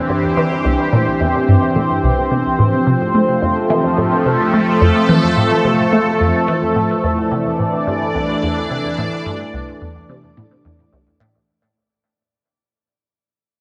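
Awash in a wet plate reverb with a 3.0-second tail, this echo-heavy mix is capped at the top end, since nothing rises above 10.6 kHz. It is a short cut of ambient, sequencer-driven space music at 108 BPM in a straight 4/4, with an expansive, mysterious mood. A sweeping resonant pad holds sustained chords up front, its detuned sawtooth and sub-octave layers evolving under slow filter swells, chorus and shimmer reverb, and it fades in across the full 11.5 seconds. Beneath it, a juicy, squelchy blip pluck plays a low riff with fast attack and short decay, colored by a phaser, lush chorus and tape echo, while a filter sweep moves through it from start to finish. The harmony shifts from Cadd9 to F at 2.6 seconds and settles on Asus4 at 7.0 seconds, as a fade-out begins at 5.6 seconds.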